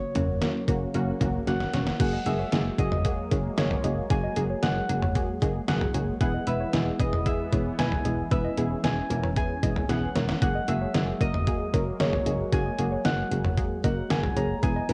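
A straight 4/4 beat from an overdriven, detuned 8-bit drum machine with a thumpy kick drives this melancholic synth-pop excerpt, where a punchy FM bass sits under a nasal, funky polysynth comp and a resonant pad with a slow filter swell, both chorused and cassette-tinged, while a bright, ringing Celtic harp carries the melody through the same tape colour and a soft, round pluck with tape echo slips in at 2.1 s over chords moving between F# and E, with drum fills at 1.5 s and 9.9 s.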